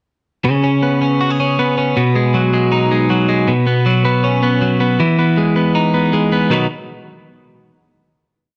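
Bright and breezy, this short indie pop piece in B major moves at 159 BPM in a straight 4/4, carried by a solo twelve-string electric guitar that enters at 0.4 seconds with a clean, fingerpicked roll pattern. Up front and compressed, the guitar works through a pre-chorus of chords including G#m7/B, Bsus2 and Emaj7, with slapback echo on its picking, before a final B chord arrives at 6.5 seconds. A moderate echo-chamber reverb gives the whole recording a roomy glow, and its top end is gently rounded off.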